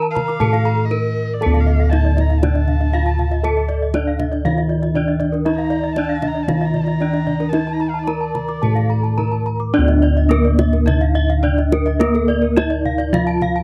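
A dry, close 1970s-style studio sound with light reverb frames this shimmering, hypnotic Balinese gamelan passage in D pelog, moving in a straight 4/4 at 106-119 BPM and cut from a longer piece. Three bronze metallophones in paired tuning ring with shimmering beats: two struck with horn mallets carry the melody and bright arpeggios, and a third, played with a wooden mallet, adds further arpeggios. Round, airy bossed gongs sit up front on the bass, while tight kendang struck with hard hands stays in the background. A rich, intimate erhu plays a second line with light vibrato and portamento from 0.1 to 9.4 s, and a new section begins at 9.7 s.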